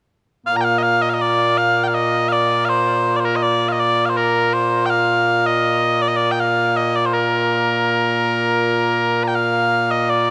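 A huge ambient reverb surrounds a short excerpt of Scottish traditional pipe music in 3/4, where a solo set of mellow small bagpipes sits up front with a sweet, continuous tone across a range from Bb2 to Bb5, sounding ceremonial and stirring from 0.5 to 10.3 seconds.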